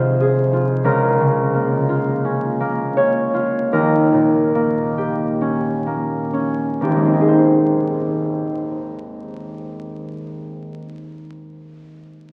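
This classical solo harp excerpt in Ab major is dreamy and graceful, moving in a very slow, rubato 4/4 at 31-49 BPM and slowing down through the first 7.3 seconds as Fm, Bbm/Db and Eb7 harmonies settle onto Ab. The concert harp, up front and thumb-plucked, has a warm, ringing tone spanning Ab1 to Eb5, and it plays alone until 10.8 seconds. A lush cathedral reverb with a long tail surrounds it, while the sound of a very old 78 rpm record adds tube saturation and vinyl crackle.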